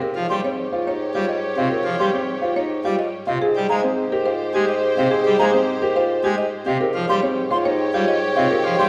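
A straight 3/4 pulse at 106 BPM drives this hypnotic, propulsive slice of minimalist classical pattern music in Ab major, set in a moderate scoring-stage reverb. A buzzing, woody marimba carries the melody from the background while a smooth grand piano and a pure, hollow concert flute entering at 0.3 seconds spin arpeggios; a mellow clarinet adds a second line, dark bowed chamber strings hold sustained chords, a classical-style bassoon anchors the bass on Ab, and a majestic full pipe organ with brilliant mixtures and chiff joins the accompaniment at 0.2 seconds. The harmony moves from Eb13 over Ab to Abmaj7 at 3.4 seconds, then returns to a rootless Eb13 over Ab.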